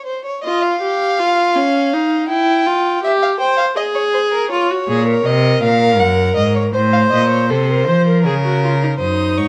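Contemplative yet driving, this excerpt from a baroque-style fugue for string quartet moves at 81 BPM in 3/4, set in Bb minor. A warm, up-front violin opens at once as the second line, singing with vibrato and expressive portamento, and the viola joins at 0.4 s with a smooth, even accompaniment. At 4.9 s the cello enters with a rich, full-bodied bass line, bowed evenly with vibrato. Just before the close, at 9.0 s, a distant second violin touches the melody high in its register, its tone lustrous and expressive. A large studio room lends a moderate reverb that gives the bowed strings an airy bloom, while the harmony wanders from Dbadd9 through C/E and Absus2 toward a settling Bbm/Db.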